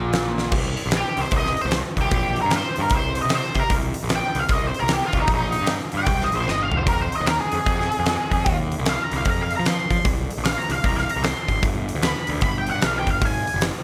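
A short burst of double-tracked, overdriven semi-hollow guitar opens this heavy, brooding blues rock and southern rock excerpt, joined at once by a growly, fuzz-soaked picked bass and a huge arena drum kit that sneaks in a fill at 0.3 seconds. The tempo sits at 151 BPM in 4/4 with a swung eighth-note feel, in C minor. From 1.0 seconds an up-front octave-fuzz lead guitar takes over with a dark, distorted solo colored by wah, ranging from Eb4 up to C6. The drums are punchy and fat, with a big-room snare, kick, hi-hat, toms and crash, and another fill arrives around 6.5 seconds as the harmony moves from C7 to Fm7, later passing through Ab69, G and Ab7. Light reverb and small-room ambience frame the power-trio sound, which is cut from a longer piece.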